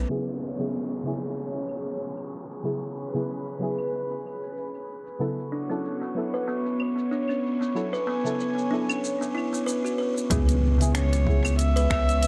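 A lightly swung 94 BPM downtempo groove in 4/4 rides on claves, finger snaps, a shaker and smooth, overdriven hi-hats that move under a filter sweep, while an airy, breathy pad and deep, nasal chord stabs pump over C#m7 and B7(no3), with a downlifter drifting in the background. A buzzing, woody kalimba enters with arpeggios at 5.5 seconds, and at 10.3 seconds an impact lands as a round analog bass returns and an overdriven electronic kick arrives. A dark, intimate bowed kamancheh with light vibrato and portamento follows at 10.9 seconds, all bathed in tape echo and long plate reverb that give this cut from a longer piece a mystical, earthy air.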